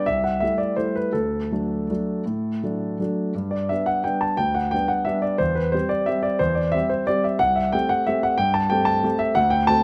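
Close, detailed microphones and a light reverb place this short classical fragment in an intimate space, with a solo concert grand heard up front, its deep bass, long sustain and audible action noise all clearly caught. It is an elegant, graceful piano waltz in G major and 3/4, moving with a rubato feel between 158 and 191 BPM across a range from C2 to A5. The opening phrase passes from Am7/C to D before a new section settles on G at 3.4 seconds and continues through C/E to C5, cut from a longer piece.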